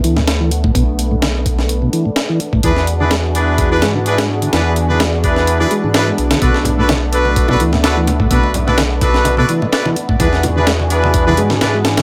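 Breakbeat at 127 BPM in B dorian with a swaggering, energetic swing, where a gritty, compressed sampler-style kit with thumpy kick and high-tuned snare sits up front over a deep, saturated sub bass and a mellow tonewheel organ riff turning on slow rotary speaker with dub echo, while a lush, detuned sawtooth pad pumps through chorus and phaser across Bm7 and E7 chords, bright horn stabs with dub echo cut in from 2.6 seconds, and very quiet low-tuned congas join at 6.6 seconds in this excerpt from a longer piece.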